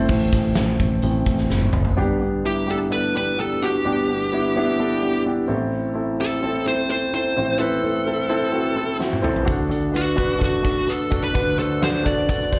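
An intimate concert grand piano, with audible action noise, deep bass and a slapback echo, drives this uplifting, warm piano-driven pop at 128 BPM in G major: it opens with a fingered electric bass, a jingly tambourine in the background and a huge arena drum kit with bright cymbals, a fat snare and a punchy kick, before a dark, compressed fuzz lead guitar takes the melody from 2.5 seconds and the drums return with a fill at 9.0 seconds as the chords move from Am through G to D, all captured live at a club gig through the venue's PA with light reverb.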